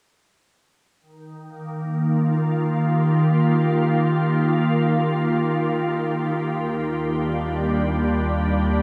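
A soft, organ-like pad sits up front in this peaceful ambient passage in Eb major, holding sustained chords from 1.0 seconds that range from Eb2 to G4. Its pure, sine-like tone opens with a slow attack and fades on a long release, thickened by ensemble chorus and its own reverb. The harmony rests on Eb before shifting to Gm7/Eb at 6.5 seconds, where a barely audible organ-like drone joins in, its detuned, evolving unison adding a faint presence until the close at 8.8 seconds. The music floats in free time with a calm, warm mood. The whole passage sits in a vast, echoing cathedral-like space with a long reverb tail, and a cassette tape character colours the recording, which is cut from a longer piece.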